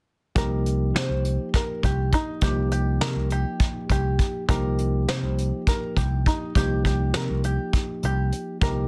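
Progressive instrumental band music in 7/8 at 204 BPM counted in eighths, this driving, tense fragment of a longer piece rests on an Eb69/C chord from 0.4 seconds. Up front, a soft brush kit with a medium-tuned snare and tight kick in a small room pairs with an amped, warm picked electric bass, while a clean, direct tine electric piano carries the accompaniment. A mellow, twangy open-back banjo fingerpicks plunky arpeggios above, all set in light reverb within a dense, heavily limited modern master.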